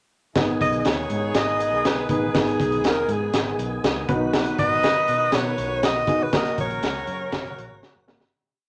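A breathy, close-miked alto saxophone carries a motif-based melody up front in this danceable, uplifting 1960s-style soul piece, over a crunchy breakbeat kit driving a soul beat with the snare on all four beats, a round, foam-muted fingered bass line with slides and chromatic approach notes, push-rhythm chords on a reedy, lightly overdriven electric piano, a sustained organ pad through a slow rotary speaker, and a horn section holding swelling long notes in the background, set in wet studio ambience before a fade-out from 6.3 s that closes on a drum fill at 7.8 s.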